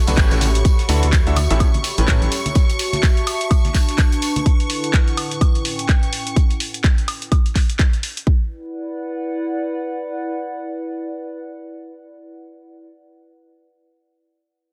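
A punchy electronic kick drives this uplifting, euphoric piano house at 126 BPM in D major with a swung 16th feel, joined by an analog drum machine's handclaps, hi-hat, shaker and woodblock, a very quiet, dry 70s kit, background tambourine and congas, a dark, hollow organ-like FM bass and a woody, brilliant upright piano riff that both stop at 2.3 seconds, shimmering string-machine violins pumping against the kick until 6.4 seconds, and a warbling, nostalgic lo-fi pad with built-in reverb that lingers to 12.8 seconds in a dense, heavily limited mix.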